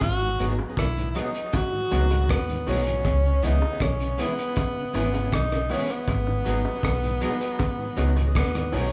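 Roots reggae with a meditative, hypnotic mood, cut from a longer piece, where a clear, close-miked tenor saxophone sings the melody with vibrato up front over a dark, round, foam-muted fingered electric bass and a cloth-damped, muffled drum kit of tight kick, hi-hat and rim click with gritty saturation, while high-tuned bongos, a clean tonewheel organ with key click, chorus vibrato, slow rotary speaker and tape echo, and a twangy, slightly broken-up electric guitar with tape echo sit in the background, the band playing live in one room with moderate studio reverb as the chords move from G#m7 to C#m7 and back.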